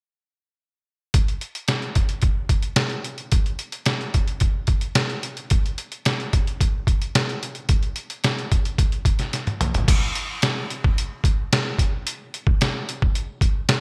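A gritty, pitched-down trip hop sampler-style drum kit sits up front in this sunny, laid-back indie pop cut at 110 BPM, its thumpy kick, medium-tuned snare, hi-hat, toms and crash compressed and treated with gated reverb from 1.1 seconds, with a drum fill at 9.3 seconds leading into a new section that runs to 13.8 seconds, all within a light digital ambience and bright 1980s-style production.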